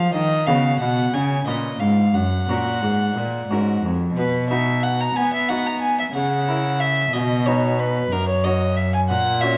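Recorded up close in a recital hall with a generous, lingering reverb, this brief passage from a baroque-style sonata movement has a flowing, radiant mood in a straight 6/8 at 61 beats per minute. A bowed solo violin with a reedy gut-string tone carries the melody up front, while a period-style cello supplies the bass with its own rich, bowed voice. A Flemish-style harpsichord with two sets of strings fills out the continuo with a full, plucked sound, as the music settles from F# major into B major at 4.2 seconds.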